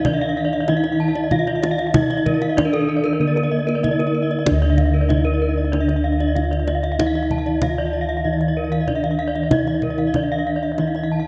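Balinese gamelan at 95 BPM in a straight 4/4, this short passage cut from a longer piece sounds shimmering and brilliant, its bronze tones ringing through a vast, echoing cathedral space. A metallophone struck with padded disc mallets carries the melody in a mellow, soft voice, its paired tuning producing shimmering beats and a vintage, band-limited colour. Beneath it a second padded metallophone sits in the background with a lower accompaniment, while up front the bossed gongs supply a round, beating bass with a boxy small-room warmth. Two higher metallophones played with horn mallets spin bright arpeggios above, one airy and the other carrying a tape echo. The kendang adds tight, close and dry percussion struck with hard hands, and every part sustains from the opening to about 11 seconds.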